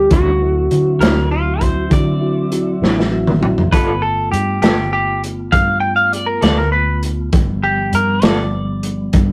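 A clean, compressed semi-hollow electric guitar sits up front in this laid-back, swaggering slow blues in 12/8, entering at 1.0 seconds and taking a solo from 3.7 seconds to the end of the excerpt. Before that, a dark electric slide guitar, slightly broken-up and played with fingerpicks, carries the opening melody, while a mellow tine electric piano stays in the background. A crunchy breakbeat kit with a tight kick and a medium-tuned snare sounds gritty, its top rolled off, and a drum fill at 2.8 seconds leads into the second section. Underneath, a round, punchy, foam-muted fingered bass and a soft, flute-like tonewheel organ turning through a slow rotary speaker hold the groove, as a lo-fi electric guitar through a small old amp adds tremolo-laden accompaniment. The rough rehearsal-room recording carries tube saturation and moderate reverb, and the harmony moves from D9 to G9.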